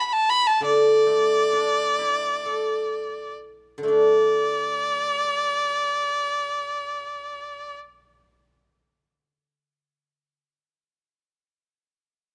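A clear, bowed erhu sings a smooth, even melody with vibrato and portamento from the start until 7.8 seconds, set up front beside a bright, silvery guzheng played with fingerpicks, whose ringing accompaniment enters at 0.6 seconds and carries on alone to 10.4 seconds, in this pastoral, graceful passage of Chinese traditional chamber music cut from a longer piece and captured by close, detailed microphones with little reverb.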